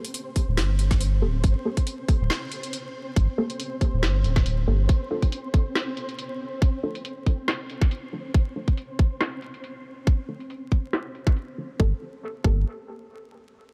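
A swung, half-time deep dubstep groove sets a dark, brooding mood, with a tight, up-front electronic kick under a garage kit of woody snare and metallic hats, both filtered and swept, while muted, detuned chord stabs drift through phaser and dub echo under their own filter sweep, a flickering, grainy, mellow texture hovers in its built-in reverb, and a soft, round sub bass sits deep from 0.5 to 4.9 seconds and returns at 11.8 seconds, all wrapped in dry vinyl crackle.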